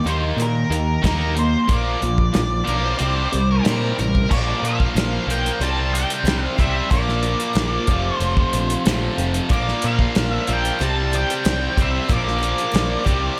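A straight 4/4 groove at 92 BPM drives this swaggering, confident classic rock excerpt, anchored by a cloth-damped, thuddy acoustic kit with dark cymbals and a tight kick alongside a growling, punchy overdriven bass up front. A bright, double-tracked distorted guitar riff sits forward as an octave-fuzz lead carries the melody, while a shimmering, boxy twelve-string acoustic with finger squeak and slapback echo is picked in the background, and a biting overdriven lead adds a brief second line from 2.7 to 4.3 seconds. Chords move among Eb, Bb, C and F, and a concert-hall reverb gives the whole band a big arena sound.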